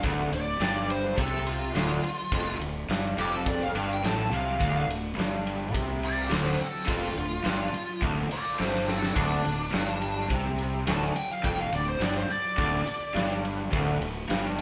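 Recorded live in one room with a moderate, large studio reverb, this smoky, heavy blues rock and southern rock power-trio piece in D minor at 105 BPM sets a raw, double-tracked overdriven garage guitar riff and a bright, growly fuzz bass alongside a big, dark drum kit with a punchy kick and fat snare, while a smooth wah lead guitar solos from 0.3 seconds, with a drum fill at 8.6 seconds.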